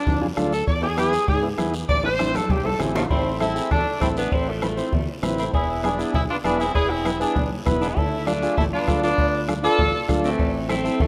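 Heard through a rough home demo mix set in a moderate, lush hall, this fiery, driving cumbia fragment races along at 198 BPM in 4/4 with a straight feel, centred on A harmonic minor. An up-front saxophone section with a bright, smooth top and jazz-style ensemble phrasing carries the melody from the first moment, and a drum fill at 1.9 seconds leads into the next section. Underneath, a round, dark fingered electric bass holds the low end while a close, soft-beater bombo anchors the beat. Ringing congas played with soft hands sit distant in the background, with very quiet metal-shell cowbell and timbales and a raspy guiro filling out the percussion. A vintage combo organ adds mellow, lightly vibrato-tinged accompaniment, and a clean, hollow-bodied semi-hollow electric guitar joins at 3.0 seconds with a second line as the harmony moves through Dm, E, Am and E7.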